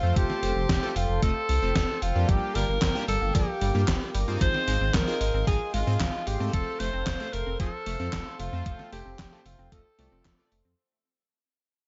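A bright alto saxophone with light vibrato and a subtone carries the melody up front, its line trailed by delay, in this driving, nocturnal synthwave excerpt at 113 BPM in 4/4. Beneath it, a deep, rumbling detuned saw bass sits up front with tube saturation, while an overdriven, thumpy electronic kick and a gated 80s digital drum machine with handclaps, hi-hat and a gated-reverb snare enter at 0.2 seconds. A shimmering, retro pulse-width pad holds sustained chords in the background with sidechain pumping, and a glossy chorused polysynth punctuates with stabs. At 2.3 seconds a round analog pluck joins with chorused, delayed arpeggios as the harmony moves from F through Gm7 and Ab6 back to F. The whole clip sits in a digital ambience, and from 5.1 seconds it fades out.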